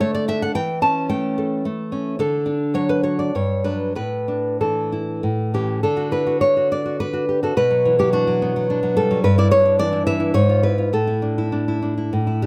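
In a rubato 3/4 that drifts between 92 and 113 BPM, this tender romantic excerpt for solo classical guitar in D major features a bright, fingerpicked nylon-string guitar with fresh strings, sitting up front under close, detailed microphones and light reverb, ranging from G2 to A5 as it moves through chords like Gmaj7, Bm and a tense C#7#9/G# before settling on Asus4 near 10.9 seconds.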